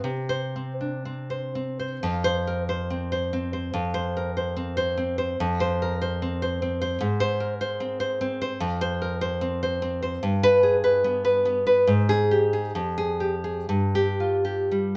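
In a rubato 2/4 pulse drifting between 58 and 76 BPM, this melancholic, wistful fragment of a romantic classical guitar piece in F minor features a solo nylon-string guitar, fingerpicked up front with a warm tone and audible finger squeak in a wet studio reverb, its harmony wandering from Csus2 through Abadd9 and G to a chordless moment at 11.9 seconds before settling onto Fmadd9 and Fsus2/G.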